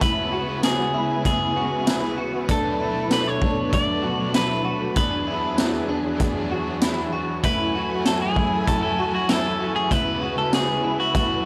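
A straight 4/4 groove from an up-front garage drum kit, with a high-tuned snare, boomy kick, hi-hat and tambourine in a gritty small-room sound, carries this haunting, ethereal dream pop fragment through a C#m7, Bm7, E7, F#m7 cycle, with the drums stopping at 11.3 seconds. A slightly broken-up, compressed electric guitar sings the picked melody through analog delay, while a second such guitar plays close-set arpeggios bathed in ensemble chorus and delay, and a bright, double-tracked overdriven guitar sits in the background with harmonic tremolo and subtle chorus. Beneath them a dark, woody string section sustains lush bowed chords with vibrato, and the whole recording has a dry, saturated hardware grain.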